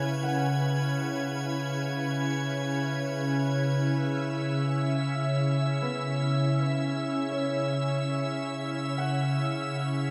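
A soft, organ-like pad sustains a C#m7 chord up front with a bright, warbling, detuned shimmer under ensemble chorus, while a mellow, thumb-plucked concert harp rings arpeggios with delay in the background, an evolving analog drone of sawtooth and pulse waves holds low through chorus and phaser, and a glassy texture of drifting overtones hovers high above, all in free time in C# minor within a wet concert hall, making this melancholic, reflective ambient fragment of about 10.1 seconds, cut from a longer piece.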